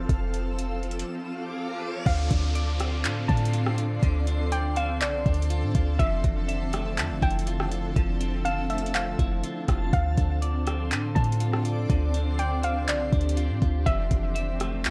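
Atmospheric cloud-rap hip hop at 122 BPM in a half-time 4/4 feel, this melancholic, ethereal D minor excerpt sets a shimmering, granular ambient pad with chorus, phaser and sidechain pumping over a deep, boomy 808-style bass, a reversed, swelling texture in the background, and a produced R&B kit of soft kick, metallic hi-hats, handclaps and rim clicks. An electronic riser and downlifter sweep through from 1.1 to 6.0 seconds, and midway through that sweep, at 2.1 seconds, a soft, round pluck melody with tape echo and a clean, picked electric guitar playing vibrato-tinged arpeggios enter, all colored by light reverb and a worn cassette warble as the chords move between Dm7 and Fmaj7.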